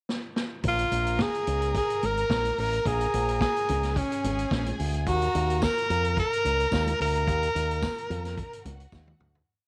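A breathy, close-miked tenor saxophone leads this sultry, glamorous disco piece at 108 BPM in Bb minor, playing a jazz-style motif of call phrases with vibrato over a syncopated, envelope-filtered fingered bass line with chromatic approach notes and a punchy vintage drum kit that opens with a fill into a four-on-the-floor beat with sixteenth-note hats. A lush, bright violin section holds long high lines in the background, while very quiet, high-tuned congas add a slap on two and open tones on four. The harmony moves from Bbm7 to Ebm at 5.1 seconds, a jingly tambourine joins on the backbeat at 5.6 seconds, and the whole piece begins fading out at 7.3 seconds in a light, small-room reverb.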